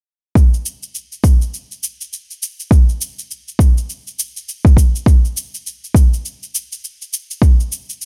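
A deep electronic kick drum sits up front and dominates this brief excerpt of organic downtempo, its produced, electronic tone carrying a meditative, earthy mood. Alongside it, an electronic cabasa plays much further back in the mix, its produced texture adding a light layer to the beat. Both parts carry a touch of studio reverb, though the overall sound stays fairly dry and close. The groove moves in 4/4 with a gentle swing on the sixteenths, giving the spare rhythm a relaxed, loping feel. The kick drops out at 7.6 seconds, leaving the cabasa alone until it ends at 8.1 seconds.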